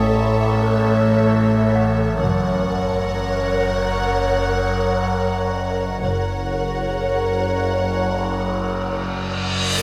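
In free time, this eerie, tense cinematic suspense cue, cut from a longer piece, hangs on sul tasto strings: two floating, soft-attack violin lines over a lush viola section with vibrato and an intimate, soft-attack cello section carrying the bass, while a distant double bass section sits in the background from 2.2 to 6.9 s as the harmony moves from A to F#. A glassy FM pad with ensemble chorus and an overtone-sweeping wave-folded drone with a moving notch sustain beneath, and a very quiet, slightly out-of-tune celesta adds delicate bell-like glints. A huge reverse cymbal rises up front at 9.0 s, all set in a moderate scoring-stage reverb.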